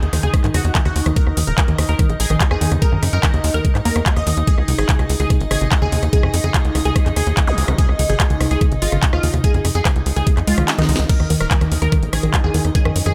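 A hypnotic, intense psychedelic trance excerpt opens with a punchy, detuned supersaw stab melody, treated with phaser, sidechain pumping and analog delay, over a morphing wavetable pad with chorus and a slow attack, a tight, nasal sequencer bass up front and a techno kit of cracking snare, metallic hats, handclaps, rim clicks and crash; these are joined almost at once by a woody, wave-folded pluck riff in the background and a knocking electronic kick that drops out for a drum fill at 10.7 seconds, with a brief zap at 7.5 seconds and a very quiet, wobbling vowel-sweep bass entering at 11.9 seconds.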